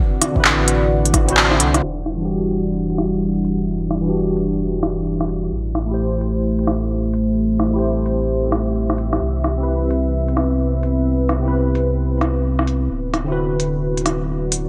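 Bathed in a lush digital hall with a bright 1980s-style sheen, this melancholic, wistful future garage excerpt at 130 BPM in swung 4/4 and E minor pairs a barky, lightly overdriven tine electric piano with chorus and delay, a moody detuned sawtooth pad and a round, tube-saturated sine sub bass, all three pumping to the sidechain, while crisp, tape-tinged handclaps, hi-hat and rim clicks sit up front and an overdriven deep kick sounds only from 0.4 to 1.3 s, before filter sweeps run on the drums and electric piano from 1.8 s over chords moving through Em9, Am7 and Cmaj7 to D13.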